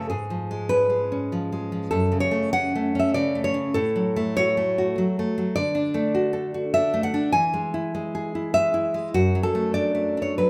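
Romantic solo classical guitar in F# minor and 3/4 at 100 BPM, its sunny mood carried by a flexible, rubato pulse with uneven beats across this 10.5-second excerpt cut from a longer piece. The fingerpicked nylon-string guitar sits up front, bright and full-bodied with fresh strings and the odd finger squeak, spanning F#2 to G#5 as it moves from C#7/G# through F#m, D and E to close on D/F#. A moderate recital hall reverb of 1.5 seconds gives the tone an open, resonant space.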